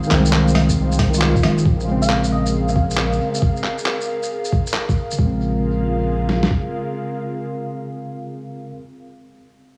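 A muffled, overdriven, pitched-down sampler drum kit with a thumpy kick and medium-tuned snare sits up front in this rainy, ghostly future garage excerpt at 136 BPM in Bb minor, its swung handclaps, hi-hat, rim click and shaker stopping at 5.2 s, while a deep, round sub bass pumps beneath a worn, slightly out-of-tune tine electric piano carrying dub echo and 12-bit grit, a breathy, warbling detuned pad, and a gentle FM synth lead that surfaces briefly at 2.0 s, all within an echo-heavy mix as the chords move from Fm7 to Bbm7.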